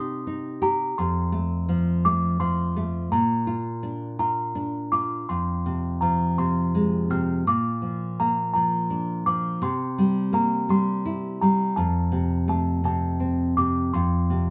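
A fingerpicked nylon-string guitar, woody and full-bodied with the dark tone of old strings, sits up front beneath a soft, tinkling music box melody in this gentle, innocent children's lullaby, an excerpt from a longer piece that sways in a rubato 6/8 at about 56 BPM through a moderate studio reverb, tuned to A4 = 436 Hz and moving from Cm and F through Bb, Fm and C7 to a closing F5 near 13.9 seconds.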